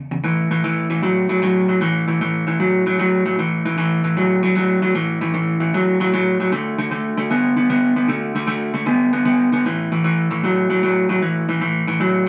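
A twangy electric guitar, played through a small old amp, carries this soulful, laid-back blues cut from a longer piece, its bright, slightly broken-up tone sitting up front in the mix. The guitar plays solo throughout the roughly 12-second passage, picked in a low register that runs from E2 to B3. The tempo is a brisk 153 BPM in 4/4, with a swung eighth-note feel that keeps the groove relaxed despite the pace. The harmony moves from A5 to D5 at 6.5 seconds and back to A5 at 9.6 seconds. A moderate studio reverb gives the sound the airy sense of a band playing live together in one large room.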